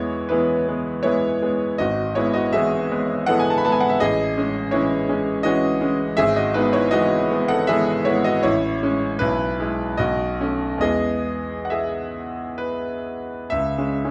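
A brilliant grand piano carries this romantic classical nocturne alone, sitting up front with a smooth, vintage tone and long sustain across its range from G#1 to B5. The mood is dreamy and tender, and the playing moves freely in rubato over a gentle triple metre. The harmony drifts from E through E/G# and Amaj7, touches E/B and a B9, settles back on E, and turns toward C#m at 13.5 seconds as this section of the music ends. A wet recital hall reverb surrounds the instrument, giving each chord a lingering glow. The piano is tuned slightly high, and the recording is a short cut from a longer piece, ending at 14.1 seconds.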